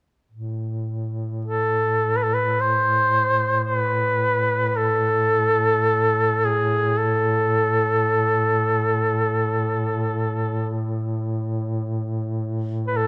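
Longing and solemn, this short excerpt of a Caucasian folk lament unfolds in free time in A harmonic minor, tuned to A4 = 443 Hz. A mellow duduk enters at 0.3 s, holding a low drone on A2 with a punchy, smooth-topped tone, vibrato and scooped notes. At 1.5 s a second duduk takes up the melody, moving between G#4 and C5 with a soft attack, vibrato and its own scooped, folk-style inflections, and it sits clearly louder than the drone. Both duduks stay up front until 13.1 s. A moderate concert hall reverb lends the sound a lingering space, and the production is dark and warm.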